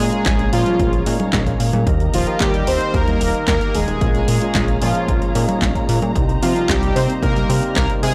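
A straight 4/4 groove at 112 BPM drives this nostalgic, danceable italo disco clip, built on a punchy, tape-warm electronic kick that arrives at 0.3 s and a house drum kit of congas, handclaps, hi-hat and a punchy snare, both set in studio reverb. Underneath, a chorused synth bass in Bb dorian blends pulse and sawtooth waves with pulse-width modulation, detuning and a filter sweep for a glossy, mellow low end. Up front, a bold, fat analog synth brass carries the melody between F3 and C5, its detuned sawtooth tone colored by chorus, tape echo and vintage 12-bit sampler grit. In the background, a clean tine electric piano plays stabs through its built-in speakers, while a veiled, con sordino string section holds dark sustained chords with light vibrato and a soft attack. The harmony moves through Bbm7, Eb, Bbm7 and Cm7, and the whole clip has a dry, gritty hardware sound with transformer saturation and a touch of digital ambience.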